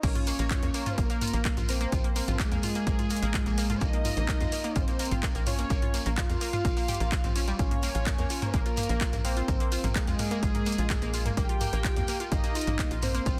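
Melancholic and cinematic, this melodic techno passage is cut from a longer piece and sits squarely in a drop, moving at 127 BPM in a straight 4/4 in Bb dorian, with chords shifting from Bb5 to Eb5/Bb at 3.8 seconds and to Bbm at 7.6 seconds. A punchy, tape-warm electronic kick anchors the groove alongside a layered house kit of crash cymbal, handclaps, toms and warm hi-hats, while a grainy shekere sits distant in a large room far in the background. A tight sequencer bass, sawtooth and square-wave with a fast-attack filter pluck, drives the low end and pumps with the sidechain. The melody comes from a thick, bold unison lead, detuned and wave-folded with ring modulation and vibrato, colored by analog chorus, cassette-tape grit and delay. Around it, a round, detuned analog pluck spins arpeggios through chorus and dub echo, and a reedy, gut-string violin section bowed in period style carries a second line above, also trailing dub echo. 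Light reverb frames a dense, heavily limited modern master.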